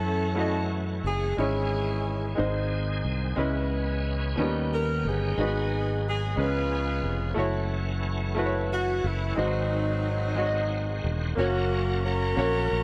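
A tight, close-miked saxophone section carries the melody up front in this solemn, fervent slow gospel passage, its vibrato and punchy pop-style attack ringing bright over a 6/8 pulse at 60 BPM in dotted quarters, with a straight feel and tuning set to A4 = 435 Hz. Beneath it, a brilliant, woody upright piano supplies accompaniment with a natural, short-sustained tone. A tonewheel organ holds sustained chords further back, full and shouting yet clean, with audible key click, chorus vibrato and a slow rotary speaker. The fingered electric bass sits prominently, dark, round and amped, giving the low end a direct, punchy weight. All four parts play throughout, moving through F#m7, C#m7, D#7b13 and G#7 before settling on F# at 11.4 seconds, where a new section begins in this cut from a longer piece. Light reverb and studio ambience frame the ensemble.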